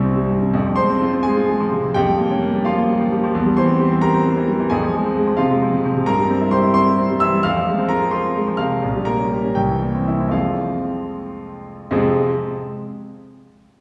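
A clear concert grand piano carries this short classical excerpt alone, playing a virtuoso study in F minor with an agitated, passionate character. It sits up front with a natural tone, deep bass and long sustain, ranging from Bb1 up to F6 and sounding from the start until 12.3 seconds. The music moves in 6/8 at roughly 74 to 89 beats per minute, counted in dotted quarters, with a freely flexible rubato pulse that slows down between 8.1 and 11.9 seconds. The harmony circles around F minor, passing through half-diminished, dominant seventh and diminished chords before settling back on the home chord near the end of the first section, after which a brief second section begins. A wet concert hall reverb with a two-second decay surrounds the instrument, lending the passage a spacious, resonant setting.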